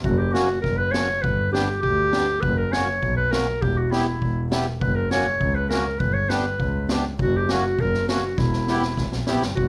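Klezmer at 101 BPM in a straight 2/4, bittersweet yet festive, cut from a longer piece: a clear, distant classical-style clarinet carries the solo melody up front, a bowed, boxy double bass with vibrato holds down the bass just as close, a reedy accordion with slow beating enters at 0.3 seconds to accompany, and an acoustic street-band kit with a high-tuned snare and boomy kick plays a fill from 8.4 seconds, all set in a small room over chords moving among F#, G and Em.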